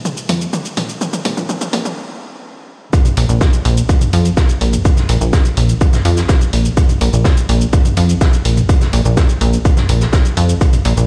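A straight 4/4 pulse drives this hypnotic, dramatic melodic techno excerpt, opening with a punchy analog drum machine fill of hi-hat, shaker and toms that builds before everything halts at 2.0 seconds. At 2.9 seconds the drop lands with an up-front electronic kick, layered and tape-toned with a small-room re-recorded punch, while a loose acoustic indie kit adds gritty, saturated hi-hat and a fat snare, its top rolled off and its hats, snare and room shaped by high-pass filtering. Underneath, a plucky analog bass of sawtooth and pulse waves moves between Bb1 and F2, its fast-attack, decaying filter pluck sounding funky and evolving as sidechain pumping makes it breathe against the beat. The whole mix sounds as if played on a big sound system in a bare room, with stone room reverb and a high-pass filter thinning the ambience.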